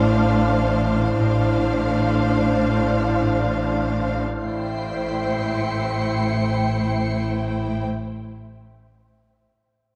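A ringing, fingerpicked concert harp riff anchors this mysterious, ominous cinematic excerpt, set over a clear, focused double bass section and a cello section sitting in the background, while an airy, breathy wind-like noise texture holds sustained chords in its own reverb. Above, a violin section carries a soft-attack melody with vibrato, a close second violin section adds an expressive line with portamento, and from 4.4 seconds a smooth, high violin texture with light vibrato joins as the harmony moves from Dm7/A to Am7. The dark production sits in a wet scoring stage reverb.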